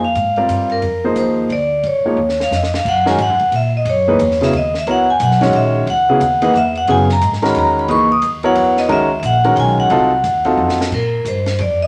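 Modal jazz in a swinging 3/4, open and spiritual in mood, cut from a longer piece and set in a wet studio reverb. A ringing, metallic vibraphone played with medium hard mallets and the motor off carries the melody up front, while a clear concert grand with deep bass, also up front, supplies accompaniment from 0.4 seconds and a woody pizzicato upright bass on steel strings holds the low end. A compact cocktail kit with dark cymbals, a high-tuned snare and a punchy kick sits dry and quiet in the mix, adding drum fills at 2.2 and 10.6 seconds as the harmony moves through colourful extended chords toward a suspended close.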